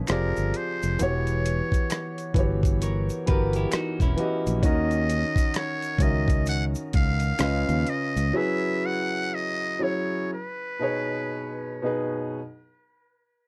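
A buzzy, breathy trumpet with a metal mute carries the melody up front, its raspy, growling jazz tone touched with light vibrato. This is a sensual, dark-toned neo-soul and R&B excerpt in B major, moving at a slow 56-66 BPM in 4/4 with a swung sixteenth-note feel, then slowing down as it goes. A clear concert grand piano with deep low end supplies the accompaniment, over a round, direct fretless electric bass and a gritty, compressed sampler-style drum kit with a thumpy kick, hi-hat and rim click. Finger snaps and an egg shaker sit faintly in the background with a vintage, band-limited sound, and a clean, picked electric guitar with phaser adds a brief second line from 2.8 seconds. The bass, drums and percussion drop out at 8.3 seconds, leaving piano and trumpet as the chords pass from C#7 through F#9sus4 to a closing B6, with the piano ringing on to 12.4 seconds. The production is dry, warm and dark, with little reverb.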